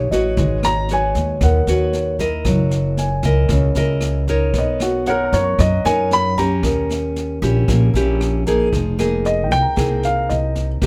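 A dark, mellow baby grand piano carries the melody from 0.6 seconds, sitting up front with a short sustain and the faint, intimate sound of its action audible beneath the notes. This is an intimate, smooth bossa nova cut from a longer piece, in a straight 4/4 feel. A fingerpicked classical nylon-string guitar fills in the accompaniment close to the listener, with occasional finger squeak, while a woody pizzicato upright bass with steel strings holds the low end just as prominently. Brushes on a jazz kit supply kick, rim click and a medium-tuned snare, the boomy kick and natural studio-room tone giving a relaxed pulse, and a concert grand piano adds a soft, deep-voiced layer of accompaniment high in its range from the background. The harmony moves through G#m11, F#13, Bmaj9 and D#7b9 before shifting to Fm11 at 8.7 seconds, all captured with close, detailed microphones and very little reverb.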